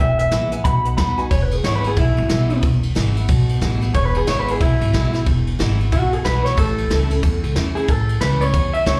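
A live club sound with a touch of room reverb frames this upbeat, retro rockabilly excerpt, where a bright, twangy, slightly broken-up electric guitar carries the melody with slapback echo and analog delay over a full-bodied picked acoustic guitar, a woody, thumpy pizzicato upright bass, and brushed drums with dark cymbals and a boomy kick entering at 0.2 seconds, while a detuned, jangly honky-tonk upright piano sits in the background only until 1.3 seconds.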